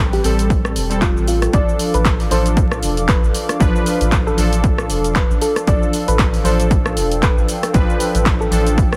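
A dense, heavily limited master dusted with vinyl crackle and kept nearly dry carries this smooth, mellow deep house excerpt with a swung sixteenth-note feel, where a hollow, flute-like pad holds sustained chords in the background beside a warbling, nostalgic tape-like pad texture, beneath chorused, detuned sawtooth key stabs with tape echo, a dark triangle bass and a gentle, filter-plucked melody, all but the melody pumping against the sidechain, while a punchy analog drum machine plays cabasa, handclaps, hi-hat and rim click and an electronic kick drum enters at 0.5 s over an Am7 to Dm change.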